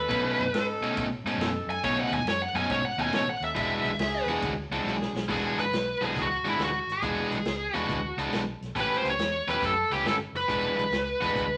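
A smooth, bright overdriven lead guitar opens with a solo over soft-attack jazz-style horn stabs and a dark, round, foam-muted fingered bass, in a gritty, laid-back electric blues shuffle at 139 BPM in E mixolydian, moving through B9, E9 and A9 chords. A cranked stack guitar picks an up-front riff while a vintage acoustic drum kit with a punchy kick and rolled-off top swings along, playing a fill just before the horns drop out at 5.3 seconds. The lead guitar carries the melody through to 11.6 seconds, with the whole mix set in a wet studio reverb, and the clip is cut from a longer piece.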